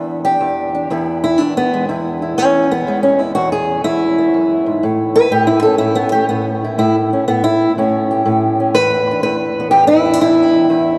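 A swung eighth-note groove in 4/4 at 123 BPM drives this rollicking, swaggering acoustic country blues in E mixolydian, moving from E7 to A7 at 4.8 seconds and landing on E5 at 8.7 seconds. A fingerpicked old ladder-braced acoustic guitar plays alone and up front for the whole 11-second fragment, its old strings giving a dark, woody, boxy tone across a range from E2 to B4. The guitar is recorded in a church or concert hall and sits in a long, wet cathedral reverb, so each phrase hangs in the air well after it is played.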